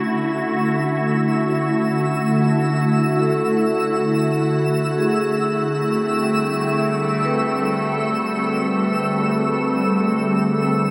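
Ambient music in free time and D major, this brief excerpt from a longer piece feels weightless and warm, resting on a D chord before shifting to D13 at 5.4 seconds. A glassy, ethereal FM pad sits up front with sustained, mellow chords, its slow attack and long release softened by ensemble chorus and its own reverb. Behind it, a calm organ-like drone of detuned sine tones lingers in the background, fading in across the whole passage with chorus and reverb of its own. A vibraphone played with medium mallets, motor off, traces ringing metallic arpeggios through a diffuse ambient delay, its boxy small-room tone also fading in from the start. High above, a twinkling granular texture adds sparkling octave-up shimmer on a sustained E6, gradually emerging, while a huge, wet reverb with a 7.3-second decay bathes the whole mix.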